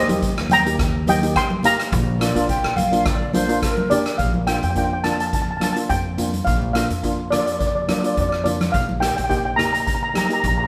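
This short cut from a longer calypso sounds like a band playing live in one room, wrapped in a wet stone-room reverb, with the steel pans carrying a vintage, band-limited colour. Set in Bb major at 106 BPM in 4/4 with a light sixteenth-note swing, the mood is bouncy and festive. Up front, a lead steel pan played with medium rubber sticks carries the shimmering melody, while a double-seconds pan fills in metallic chords beneath it over changes that move from Eb to Bb, then Bb6 and Eb over Bb. A pizzicato upright bass with steel strings gives a dark, growly, woody low end. A street-band drum kit of hi-hat, rim click and boomy kick sounds airy and polished, and thick-skinned congas played with hard hands sit in the background. A breathy, hollow jazz flute enters from a distance as a second line between 2.2 and 4.2 seconds, using a straight tone with a soft attack.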